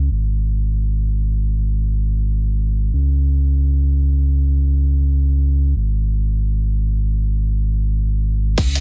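A deep, sine-toned sub bass with an added octave stands out from the start, sitting up front with a fast attack and long sustained notes that move between Ab1 and Db2. This short cut from a longer liquid drum and bass piece has a warm, uplifting mood and unfolds in free time, with a filter sweep running across the opening section until 8.6 seconds. At that point the drums arrive in a brief burst: a tight, layered electronic kick placed up front, and a produced kit of crash cymbal and metallic hats, both re-recorded in a small room. A separate acoustic hi-hat joins them, very quiet, dark and smooth with a gritty, saturated edge and a rolled-off top. The sound is dry, with little reverb, and the master is dense and heavily limited, with a low-pass filter shaping it until the clip ends at 8.8 seconds.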